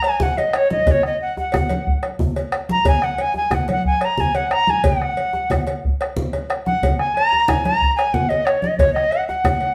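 Earthy and powerful, this short excerpt from a longer West African drum ensemble piece in a straight 12/8 sets a breathy, bright flute with vibrato and slapback echo up front over a deep, dark bombo, a compressed, saturated metallic cowbell, thick-skinned congas and a tight, cracking djembe with metal rattles, the congas and djembe struck with hard hands, all in a reverberant room heard from further back.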